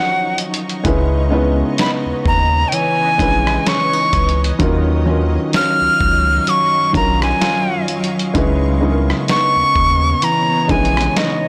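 A blown-out, overdriven recording in a small room with light reverb frames this late-night, longing contemporary R&B fragment at 64 BPM with swung sixteenths, where a breathy, bright jazz flute with tape echo leads the melody over felt-muted upright piano, fingerpicked flamenco guitar arpeggios with tape echo, a blurred granular cloud pad, a gritty sampler-style drum kit entering at 0.4 seconds, and a thick, tube-saturated sub bass from 0.9 seconds, as the chords move between Ebm9 and Dbm9 and a delicate celesta appears briefly at 2.7 seconds.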